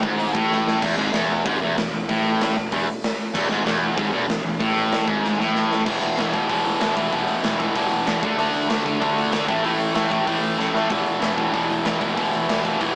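A straight, driving 4/4 at 190 BPM pushes this upbeat, rebellious punk rock excerpt in E mixolydian, cut from a longer piece, with a big acoustic rock kit of punchy kick, medium-tuned snare, hi-hat and bright crash cymbals that drops fills near the start, just before 5.9 seconds and around 10.6 seconds. Up front, a double-tracked, picked electric guitar hammers out a bright distorted riff, moving from E into a power-chord sequence of E5, D5 and A5 once the second section arrives at 5.9 seconds, while a growly, fuzz-laden picked bass sits lower in the mix. Light reverb and a rough rehearsal-room quality give the whole thing a raw, small-speaker sound.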